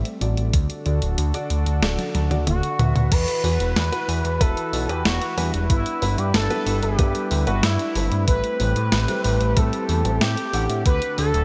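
A fat, thick analog bass sits up front in this uplifting, nostalgic synthwave passage, its sawtooth and square-wave tone shaped by a filter sweep and a moving notch, with a fast attack and sustained notes pumping against the sidechain. It moves at 93 BPM in a straight 4/4 in D mixolydian, drawn from a longer piece, with chords running from Am7 and D through Esus2 and G6 before returning to Am7 and D. A thumpy, sampler-style electronic kick and a clean 12-bit drum machine, with its medium-tuned snare, hi-hat, toms and crash placed forward, share a studio reverb, and a drum fill from 1.8 to 3.1 seconds leads into the second section. A detuned, mellow sawtooth pad holds sustained chords in the background with a slow attack, chorus and the same pumping, while a dark, intimate baby grand piano adds vintage-sounding stabs, its action noise audible beneath analog chorus. At 2.5 seconds an expressive synth lead enters with a soft attack, vibrato and subtle chorus, carrying a smooth sawtooth melody between E4 and B4. 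The whole mix has a bright 1980s-style digital sheen and light reverb.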